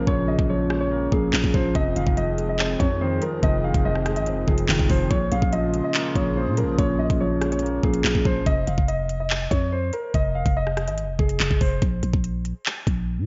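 Drill hip hop with an ominous, cold half-time feel, where a dark, long-sustaining grand piano melody through a low-pass filter and delay floats over a felt-muted upright piano with audible action noise, a detuned analog pad with chorus tucked in the background, a buzzy, growling 808-style bass and an up-front electronic kit of knocking kick, crisp hi-hats, handclaps and rim clicks, the mix soaked in dreamy plate reverb with muffled highs, until the upright and pad fall away by 8.5 s and the grand piano stops at 11.8 s, leaving bass and drums to close this cut from a longer piece.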